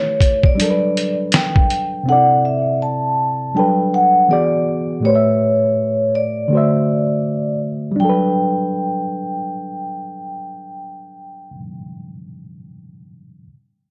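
A mellow, ringing vibraphone with soft mallets and a slow motor vibrato carries the melody over a reedy, slightly out-of-tune electric piano that is bright, lightly overdriven and heard through its built-in speakers, in this dreamy, cosy lo-fi hip hop fragment at 81 BPM in G major, where a muffled, pitched-down sampler-style drum kit with a thumpy kick and 12-bit grit plays only from 0.2 to 1.9 seconds, and the electric piano rings on alone after the vibraphone stops at 11.6 seconds, all under a cassette-tape haze.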